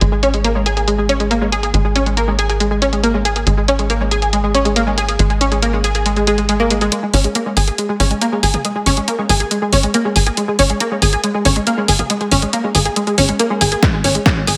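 A straight 4/4 pulse carries this short cut from an uplifting trance track, its mood emotional and bittersweet. A detuned sawtooth pluck spins arpeggios, round and bright with ensemble chorus, delay and sidechain pumping, while a tight sequencer bass holds a low G#1, driving and decaying in its sawtooth-and-square tone as it pumps with the sidechain. An analog drum machine sits up front and dry, with filtered hi-hats, snare and toms. From 6.9 seconds the music becomes a build-up, and at 13.8 seconds a drum fill arrives with a brief, punchy electronic kick drum. A moderate digital room reverb lends the parts a light ambience.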